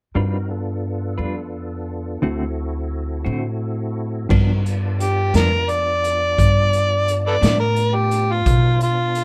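A slow, straight 12/8 blues at 58 BPM in G mixolydian, laid-back and gritty, this short cut from a longer piece opens on G7 and D7 with woody, thumpy upright bass up front, a clean, compressed electric guitar with tremolo, and a clear tonewheel organ sustaining chords through a slow rotary speaker and chorus vibrato, its key click audible. A raw garage drum kit enters at 4.3 seconds with a boomy kick and dark cymbals, sounding saturated and rolled-off in a pumping small room, and at 5.0 seconds an overdriven, amplified harmonica takes a jazz-style solo up front with vibrato and tongue slaps. The guitar stops at 7.6 seconds, and the mix has the rough character of a home demo.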